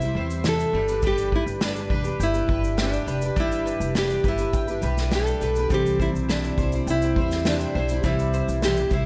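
The recording is set in a small room with light reverb. This short acoustic pop cut moves at 103 BPM in a straight 4/4, with a reflective, tender mood as the chords pass from C to G and back to C at 5.7 seconds. A bright, fingerpicked nylon-string guitar carries the melody up front, its classical tone marked by audible finger squeaks. Beneath it, a double-tracked, full-bodied jumbo steel-string guitar picks the accompaniment with squeaks of its own, while a mellow bowl-back mandolin adds picked arpeggios on its double strings. A thumpy pizzicato upright bass with gut strings anchors the low end, and an unplugged drum kit, sitting forward and played with bundle sticks, brings a punchy kick, a medium-tuned snare and shaker. At 5.7 seconds a very quiet, dark upright piano joins with a woody, long-sustaining tone.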